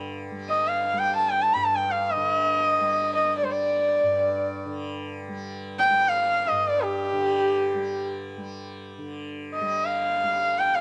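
Devotional and radiant, this brief Hindustani classical fragment, cut from a longer piece, unfolds in free time over a bright, buzzing tanpura drone that shimmers softly in the background from the very start. At 0.5 seconds a single sarangi enters up front, its nasal, earthy bowed tone gliding between notes with light vibrato, an airy bow and ringing sympathetic strings. The home cassette recording adds a touch of reverb to the sound.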